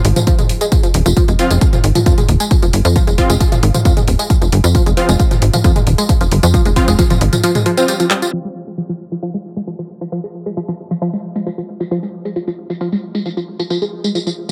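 Driving peak-time techno with a relentless, industrial mood, this excerpt opens on a drop where a tight, punchy sawtooth-and-square sequencer bass with ring-modulated bite pumps against a heavy electronic kick, the bass stopping around 7.3 seconds and the kick just before, around 7.1. A wave-folded, phased synth riff with tube saturation and tape echo runs throughout, while an aggressive, detuned rave stab sits bright but in the background until 8.0 seconds. After a drum fill, the second section leaves the tape-warm, small-room drum kit of handclaps, tambourine, toms and warm hats under a filter sweep alongside the riff, all in a light reverb.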